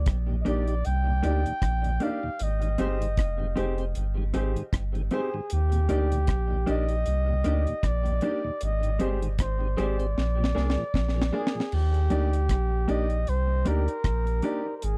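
A breathy, whispered flugelhorn carries the melody from the very start over a round, sine-like sub bass with tube saturation, opening this laid-back roots reggae cut from a longer piece in Eb major at 77 BPM, with a gentle 16th-note swing. A dark, dry acoustic drum kit sits up front with the bass, its high-tuned snare, tight kick, rim click, hi-hat and crash keeping the 4/4 groove smooth and unhurried. Clean, fingered electric guitar with tape echo and short, boxy stabs from a dark baby grand piano fill the middle, while a mellow tonewheel organ with key click and slow rotary speaker hums in the background until 11.6 seconds. The flugelhorn's intimate, soft-attack line, treated with tape echo, floats over a slow Ebmaj7 to Abmaj7 sway, and a drum fill over Bb7 at 10.2 seconds leads the band back around to Ebmaj7. The dry, close sound recalls a 1970s studio, giving the whole groove an easygoing, homespun feel.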